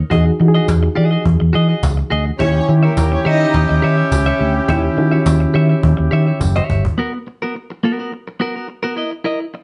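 A straight 4/4 disco groove at 105 BPM drives this sultry, danceable passage cut from a longer piece. A woody, compressed cajon with faint snares holds the beat beside a close, jingly tambourine, while a punchy, up-front fingered electric bass sits beneath them. A twangy, clean electric guitar and a worn, reedy electric piano, lightly overdriven with fast tremolo and slightly out of tune, fill the accompaniment over chords moving from Emaj9 to D#7b9. At 2.4 seconds a lush, bowed violin section adds a brief second line with smooth vibrato, and a clear horn section comes in with punchy pop-style stabs. After a drum fill from 6.4 to 7.0 seconds, the guitar carries on alone over F#add11/B and D#5. The production is dark and warm, set in a moderate studio reverb.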